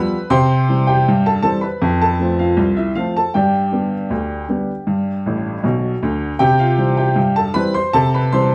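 Lively and playful, this short ragtime cut moves at 79 BPM in a straight 2/4 in C major. A solo upright piano, clear, woody and intimate with audible action noise, sits up front and spans a range from deep bass to bright upper notes over a C, F, G progression. The piano plays a fill from 5.3 to 6.4 seconds before a new section returns to C, all wrapped in a short, wet studio reverb.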